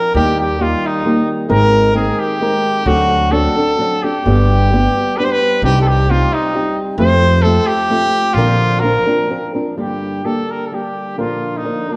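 Passionate and dramatic, this fragment of mariachi-flavored Mexican folk moves in a rubato 3/4 at around 131 BPM in Bb major. A bright trumpet carries the classical-style solo melody up front, sounding roomy and somewhat distant as it moves between D4 and C5. A warm, thumb-plucked flamenco guitar shares the foreground with acoustic accompaniment through the whole 12 seconds, while a woody pizzicato upright bass with steel strings anchors the low end until it drops out at 8.9 seconds. The harmony travels through chords such as Abadd9, D7, Cm and Fadd9 before shifting into a new passage at 9.8 seconds that settles from Gm onto Bb. A reverberant recital hall surrounds the players, and a worn, warbling cassette tape quality adds a drifting pitch that gives the recording an aged feel.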